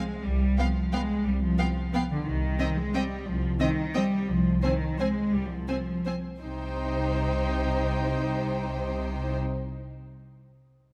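Bittersweet and sweeping, this classical excerpt for string ensemble unfolds in a flexible, rubato triple metre. The cello section sits up front with a rich, smooth and even bowed tone, soon joined by a double bass section, also up front, whose soft attack lends the low end a warm, distant depth. At 0.6 seconds an expressive violin section takes up the melody from a close position, while a second violin line, focused and set in the background, has been sounding beneath it from the start. A viola section fills in the accompaniment with a warm, smooth and even tone and a smooth top, and every string part sings with vibrato. The harmony moves from G7 over C to C minor, the pace eases between 3.8 and 6.4 seconds before a brief new section begins, and a moderate concert hall reverb gives the ensemble a spacious glow.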